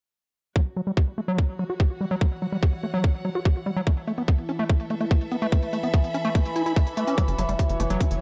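Psychedelic trance at 145 BPM in F# minor, this hypnotic fragment opens at 0.6 seconds with a tight, up-front electronic kick, smooth tape-warm hats sitting in the background, a squelchy, gritty acid bass riff pumping against the kick through tape echo, and a rich bowed chamber string section fading in with vibrato. From 2.0 seconds an overtone-sweeping drone holds sustained chords, its resonant sawtooth tone slowly blooming through chorus, phaser and its own reverb while filter sweeps move across both drone and drums. A punchy, driving sequencer bass on a low F# enters at 7.3 seconds, and the mix stays dry and dark at the top end.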